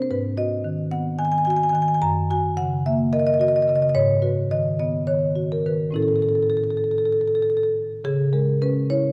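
Flowing in a rubato 7/8, this brief, hypnotic fragment of a contemporary classical piece for solo marimba puts the warm, up-front sound of medium mallets into a dark production bathed in the lingering reverb of a recital hall, as G#m7, F#6 and A harmonies circle before a turn to C#m at 8.0 seconds.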